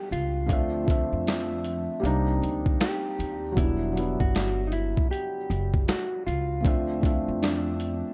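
A gritty, sampler-style boom bap kit sits up front with a thumpy kick and a medium-tuned snare, carrying the grit of a vintage 12-bit sampler and the air of a large room, and it swings its sixteenths in this nostalgic, hazy lo-fi hip hop excerpt. A felt-muted upright piano, soft and intimate with audible action noise, plays filtered minor ninth chords, while a woody pizzicato upright bass holds the low end. A clean, fingered electric guitar carries a dark melody through a low-pass filter and tape echo, all set in light reverb and a dark, warm production.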